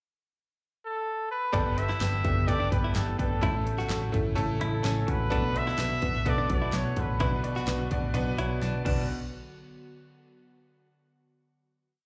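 Piano-driven pop with a bittersweet, driving mood, heard as a live gig through a club PA: a warm trumpet with light vibrato and scooped notes plays hook phrases from 0.9 seconds, then at 1.5 seconds a bright, slightly detuned upright piano with audible action noise plays eighth-note chords alongside a ringing clean electric guitar figure, a round foam-muted bass with slides, and a punchy pop drum kit whose snare is layered with handclaps, joined from 1.6 seconds by a very quiet breathy pad, before a drum fill at 8.6 seconds leads into a final hit.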